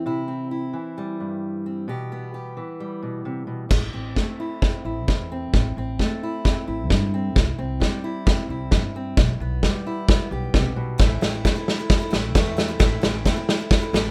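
A rough home-demo mix with light reverb frames this stirring, bittersweet indie folk fragment, which opens on a fingerpicked steel-string acoustic guitar, up front with audible finger squeak and a plate reverb sheen. At 3.7 seconds a woody pizzicato upright bass and a roomy, loose drum kit with dark cymbals, a tight kick and a medium-tuned snare enter, as a build-up and drum fill carry the arrangement forward over chords moving between Am, C and Em/B. At 11.0 seconds the fingerpicked guitar hands over to a warm, picked archtop acoustic guitar, also touched with plate reverb and finger squeak.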